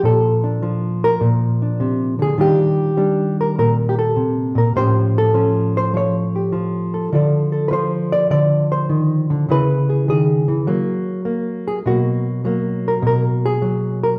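Sophisticated and relaxed, this short cut from a longer solo jazz piece moves at 102 BPM in 4/4 with a swung eighth-note feel, carried entirely by a dark, clean electric hollow-body jazz guitar played fingered and sitting up front, ranging from A2 to D5. After a brief opening on Bbmaj7 and Bbadd9, a second section begins at 2.4 seconds with richer harmony such as Ebmaj9#11, Aaug7 and Dm7, then passes through Dbm7 and Gbadd9 before arriving at B5 at 11.8 seconds. A wet large studio reverb lends the sound a roomy glow, as if heard from further back in the space.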